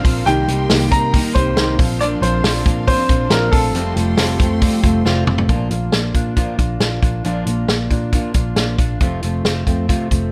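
Bright and breezy, this jangly indie pop excerpt moves at 137 BPM in Bb major, with a woody upright piano carrying the melody over a vibraphone second line played with medium hard mallets and slow motor vibrato, both touched with tape echo, while lush, softly bowed symphonic strings sustain chords in the background. A full-bodied jumbo acoustic guitar is fingerpicked alongside dark, clean electric guitar arpeggios treated with analog chorus and tape echo, and a round, foam-muted picked electric bass plays with a punchy, up-front vintage drum kit with a rolled-off top. The piano and vibraphone drop out at 5.0 seconds, and a drum fill at 5.1 seconds leads into a second section where the strings stop at 5.5 seconds and the guitars, bass and drums carry on in a light reverb.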